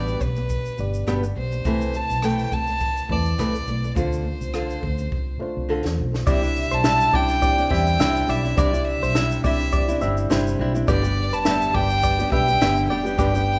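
Opening together, a heartfelt, sunny acoustic pop excerpt at 104 BPM in C major sets an intimate, airy-bowed violin melody with light vibrato over fingerpicked nylon-string guitar with finger squeak, a reedy electric piano, a dark, foam-muted round bass and a compact cocktail kit with a high-tuned snare and boomy kick, whose fill from 5.1 to 6.3 s leads to a twangy, direct clean electric guitar picking arpeggios from 6.3 s, all in a moderate recital-hall reverb.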